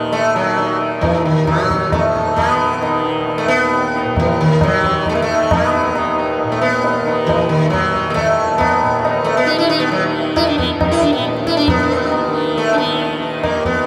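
Hindustani classical music in raga todi on E flat, this short excerpt cut from a longer piece carries a longing, solemn mood at 135 BPM in a seven-beat cycle with a straight feel, gradually speeding up throughout. A softly plucked tanpura sounds its buzzing drone from the opening moment, sitting low in the mix beneath the sitar. The sitar carries the melody from 0.1 seconds, up front and round, its plectrum-plucked tone shimmering with sympathetic strings and a buzzing edge. Tabla provides the percussion, low-tuned and ringing, heard at a distance as if placed in a large room. The whole performance sits in a vast, echoing space, bathed in a huge, wet ambient reverb with a long eight-second tail, and a new section begins at 11.7 seconds before the recording ends.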